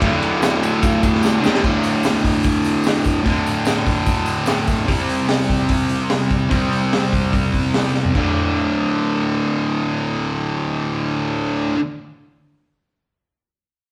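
Garage rock at 147 BPM in a rowdy, raw 4/4 snippet, with a bright, double-tracked fuzz guitar riff up front that moves from D5 to C5 and back to D5. A crunchy breakbeat drum kit with dark cymbals, a high-tuned snare and a tight kick sounds gritty and saturated with a rolled-off top; it plays a fill around 1.2 seconds and drops out at 8.2 seconds, leaving the guitar alone. A very quiet, jingly tambourine sits in until 4.8 seconds, and a moderate stone-room reverb gives the band the feel of playing live together in one space.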